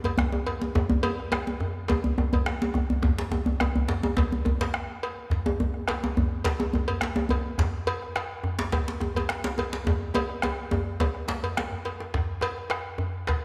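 Driving and earthy, this West African traditional drum ensemble moves at 105 BPM in a straight 4/4 feel, cut from a longer piece. A deep djembe played with hard hands sits up front in a small-room sound, while a second djembe, struck with soft hands, stays in the background with a tight, cracking, compressed and saturated tone. A metallic cowbell and a round, close and dry bombo complete the ensemble. A long echo-chamber reverb lends the recording a spacious, wet ambience. A drum fill starts at 9.9 seconds, one of the djembes falls away at 11.7 seconds, and a brief closing section begins at 12.1 seconds.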